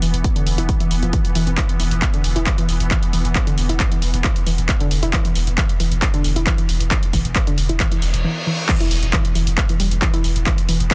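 A dense, heavily limited and dry mix carries this driving, hypnotic stretch of peak-time techno at 135 BPM: a heavy, tape-warm electronic kick enters at 0.2 s beneath a small-room drum kit of crash cymbal, handclaps and hi-hat, a thick, saturated sine sub bass holds E1 with overdrive and sidechain pumping, a dusty, detuned lo-fi pluck riff warbles through chorus, tube saturation, pumping and delay, and a tense, granular swarming drone hums in its own reverb and pumping, until a background reverse cymbal from 8.0 s leads into an impact at the drop at 8.7 s.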